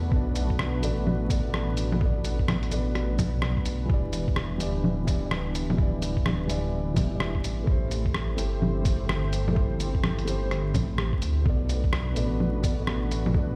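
A dark, detuned saw bass sits up front in this future garage excerpt, its deep, rumbling tone beating and pumping against the kick. At 127 BPM in 4/4 with a swung sixteenth feel, the groove is anchored by a muffled, thumpy electronic kick from 0.1 seconds, joined at 0.4 seconds by a compressed lo-fi sampler kit of hi-hat, rim click, bongos and cabasa that sits close and forward. Above, a felt-muted upright piano plays soft, mellow accompaniment with audible action noise, its notes trailed by tape echo and breathing with sidechain pumping. A moody analog pad holds slow-blooming chords, thickened by chorus and a sub octave. The harmony moves from Bm7 to Em7 and Am7 before returning to Bm7, keeping the mood ghostly and rainy in A dorian. The whole mix sounds as if played through a big system in a bare stone room, with a light reverb and a haze of vinyl crackle.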